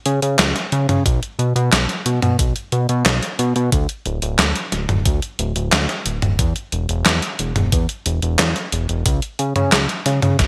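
A straight 4/4 pulse at 90 BPM drives this cinematic synthwave passage in B minor, cut from a longer piece. A detuned 8-bit digital drum machine sits up front from the opening at 0.1 s, its handclaps, hi-hat, medium-tuned snare and toms carrying a gated reverb and a tape-warm, sampler-style grit from being re-recorded in a small room. An electronic kick joins at 1.1 s with a thumpy, sampler-style punch that shares that small-room character. Beneath and alongside the drums, a fat analog bass ranging from D1 to C#3 blends detuned sawtooth, square and triangle tones with ring modulation and a filter sweep. Its fast attack and sustained, thick notes give the groove its driving weight. The whole passage carries a bright 1980s-style digital production with light reverb.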